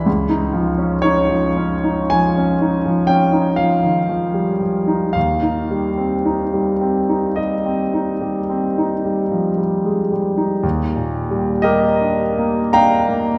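A wet concert hall surrounds this recording, its long reverb tail lending the sound a hazy glow, as though heard from further back in the room. Within that space, a solo concert grand piano sits up front, clear and intimate, with deep bass, long sustain and the soft mechanical noise of its action audible beneath the notes. This is serene, impressionist classical music in an unhurried 5/4, phrased with a flexible rubato that lets each harmony breathe across a span from Db2 up to Bb5. The harmony drifts from a Dbadd9 colour to Eb6 at 5.2 seconds, then settles into a luminous Ebmaj9 as a new section opens at 10.6 seconds. Cut from a longer piece, the passage runs just over thirteen seconds, a brief, polished glimpse of calm reflection.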